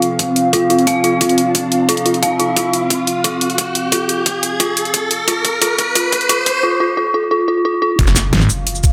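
A moderate digital room reverb frames this dark, mechanical drum and bass excerpt at 177 BPM in straight 4/4, cut from a longer piece and built as a tension-raising build-up over an F5 chord. A deep, moody analog pad holds sustained chords with slow attack, chorus and sidechain pumping. Up front, an eerie, inharmonic FM synth bell spins arpeggios through chorus, phaser, dub echo and a filter sweep. The layered, tape-tinged drum kit brings a huge snare, bright hats and shaker with a fill midway, while a knocking electronic kick drives underneath and an electronic riser climbs from just after the start until about 6.6 seconds. At 8.0 seconds an impact lands and a swirling, thick, saturated saw bass bursts in briefly, stopping at 8.5 seconds.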